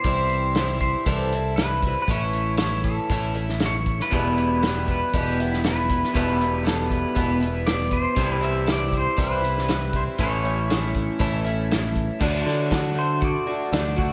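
A clean, compressed pedal steel guitar carries the melody with fingerpicked slide and volume swells, treated with slapback echo and analog delay, over a bright, shimmering, octave-doubled twelve-string acoustic guitar, a warm picked electric bass and a punchy, up-front country drum kit in this reflective, wistful folk rock and heartland rock fragment in E minor at 118 BPM, where a slightly broken-up, lo-fi electric guitar riff with lush chorus joins at 4.1 s as the chords move from C and A through Em to a closing D, the mix sitting in a wet hall reverb that lends a big arena sound.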